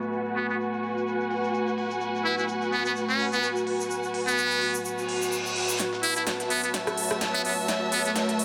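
A buzzy, metal-muted trumpet carries the melody from 0.4 s over an aggressive, bouncy bass house groove at 127 BPM in F# minor, with a rich, bowed string section up front, a deep, dark sawtooth pad with chorus holding an F#m chord, a grainy egg shaker until 5.8 s, a punchy, overdriven big-room kit with crisp hats, and a reverse cymbal and riser leading into a build-up and drum fill where a gritty, very quiet sampler-style kit joins, all in a wet digital room.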